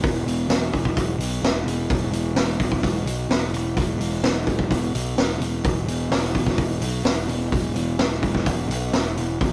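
A fuzzed, overdriven electric bass, picked low in the E1 to B1 range and sitting up front, drives this mysterious, hypnotic psychedelic rock excerpt at 128 BPM in a straight 4/4. A vintage acoustic drum kit of hi-hat, kick and snare plays alongside it from 0.0 to 9.5 seconds, with a punchy kick, a medium-tuned snare and a mid-forward, rolled-off top end. The rough rehearsal-room sound carries light reverb and tube saturation.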